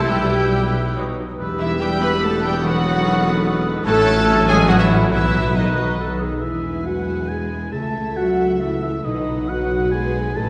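A dramatic, urgent orchestral passage in 3/4 at 135-147 BPM opens in E minor with lush, vibrato-rich violins carrying the melody over a second violin line, airy flute, oboe and a very quiet clarinet that drops out at 6.4 s, while a rich viola bed, punchy horn chords, ringing harp arpeggios, dark trumpet stabs that stop at 6.0 s, and a bass of rich cellos, expressive double basses and a distant, roomy tuba all sit back in a reverberant scoring stage as the harmony turns to E major.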